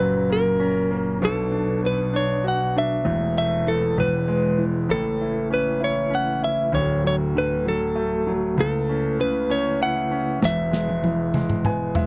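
A tender, romantic six-eight pop ballad in A major at 65 BPM, this dry, close 1970s-style excerpt features a clean, direct-recorded electric guitar carrying the melody over a clear concert grand piano with deep bass and a soft, flute-like tonewheel organ through a fast rotary speaker holding sustained chords, moving from F# and Bm through Esus4 and Aadd9 to D and E before an airy, polished studio drum kit enters with a snare and tom fill at 10.4 seconds and the piano adds its own fill at 11.3 seconds.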